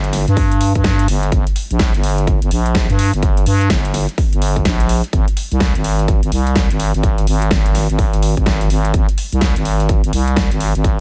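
A swung sixteenth-note groove in 4/4 drives this bouncy, swaggering bass house cut from a longer piece, with a big-room dance kit of huge snare and metallic hats running throughout, joined at 0.4 seconds by a punchy, layered electronic kick. Up front, a thick, growling FM bass with a fast attack and sustained notes sits between G1 and G2, its overdrive and sidechain pumping giving it a gritty, breathing push. The drums carry a small-room character, and the whole mix is dry, with little reverb.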